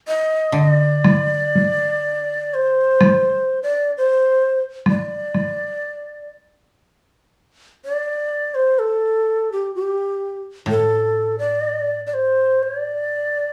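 A breathy, end-blown bamboo shakuhachi with a crisp, chiffy attack opens this calm, austere excerpt of Japanese chamber music, carrying the melody in D in sen at a rubato 59-65 BPM in 2/4, while a dry, woody koto played with fingerpicks adds low accompaniment and solo taiko drums struck with heavy sticks ring compressed and saturated from 1.0 to 5.6 s, before the koto returns at 10.7 s, all set in a studio room heard from further back with a wet reverb.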